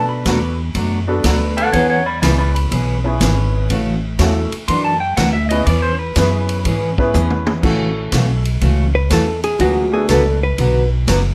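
A twangy lap steel guitar opens this cheerful western swing clip at 122 BPM in A major, playing a slide solo with volume swells over a worn, slightly detuned upright piano and a thumpy, woody pizzicato upright bass on gut strings. A full-bodied, picked jumbo acoustic guitar and a swinging big-band drum kit with a punchy kick join almost at once, moving through chords such as Bm7, E6 and F#7b13, and a drum fill at 7.1 seconds leads into a second pass. From 8.9 seconds, a dark, compressed hollow-body jazz guitar takes a brief, up-front fingered solo over A6 and D6 before the cut, all in a light reverb with some lossy compression artefacts.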